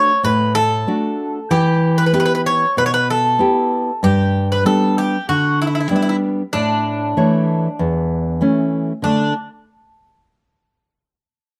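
Dry, open-air sound brings a sunny Greek folk passage at 96 BPM in D major up close. A bright, metallic Greek bouzouki, picked on double strings with some octave-doubled courses and a slapback echo, carries the melody over a full-bodied, fingerpicked nylon-string guitar with a deep classical tone and audible finger squeak, both up front and stopping at 9.3 s, as the harmony moves from D through Em, G and A before landing on D5.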